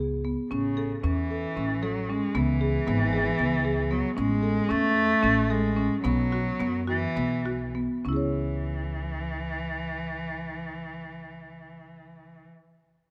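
Close, detailed microphones and light reverb frame this pensive, hypnotic excerpt of contemporary chamber music in 7/8 and C# minor at 202-230 BPM in eighths, where a woody padauk-bar marimba played with medium mallets spins arpeggios, a pizzicato upright bass with steel strings holds the low end, and from 0.5 s an up-front, richly bowed cello sings an expressive second line with vibrato and portamento, the pulse slowing from 4.2 s to 8.0 s before a new section settles on C#m.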